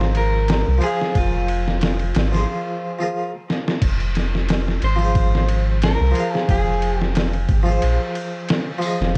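A soft dub sub bass sits up front throughout, deep and round with a fast attack and sustained notes that anchor this dark, cinematic trip hop piece in F minor at 90 BPM, with a light swing on the sixteenths. Beside it, a sampler-style drum kit, compressed, pitched down and overdriven, delivers a thumpy kick, a medium-tuned snare, hi-hat, ride and crash, with a break from 2.5 to 3.8 seconds capped by a short drum fill. An airy, bright harpsichord with a single set of strings supplies the accompaniment, its plucked tone treated with tremolo and tape echo. Entering at 0.2 seconds and stopping at 7.1 seconds, an electric guitar at the edge of break-up carries a dark, picked melody through tape echo. Light reverb and the warble of worn cassette tape, with its drifting pitch, give this short cut from a longer piece a hazy, aged character.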